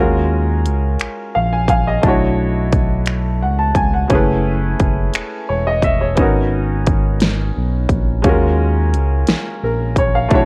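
This slow R&B cut in 6/8 moves at 58 BPM, counted in dotted quarters with a straight feel, and carries a yearning, late-night mood, tuned slightly flat to A4 = 437 Hz. A grand piano sits up front with an intimate, boxy tone and audible action noise, playing accompaniment between G#3 and A5 and adding a short fill from 1.0 to 2.0 seconds. Alongside it, a smooth, dark synth bass blends sawtooth and square waves with a touch of ring modulation, its fast attack and sustained notes holding the low end from E1 to D#2. A big-room electronic drum kit enters at 0.7 seconds, layered and produced, with a punchy kick, a huge snare, hi-hat and finger snaps placed prominently in the mix. The harmony drifts through minor eleventh chords, D#m11, Bm11, F#m11 and G#m11, before returning to D#m11. The whole recording sits in a digital ambience with a worn, warbling cassette-tape character and warbly pitch drift, and this brief fragment is cut from a longer piece.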